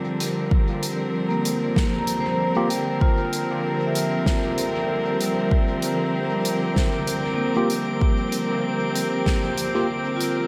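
A swung 96 BPM groove in 4/4, built on a deep, tape-warm electronic kick and a soft-mallet kit with hi-hat, fat snare and dub echo, carries this hazy, spacious ambient dub fragment in G dorian over a single Gm7: a dark, bowed chamber string section holds intimate sustained chords, a metallic vibraphone played with medium hard mallets and motor off rings out arpeggios through dub echo, a very quiet, clean tine electric piano adds brief stabs at 2.6 s and again from 7.6 s, and a glassy, chorused texture of drifting sine overtones enters at 6.1 s, within a moderate spring reverb.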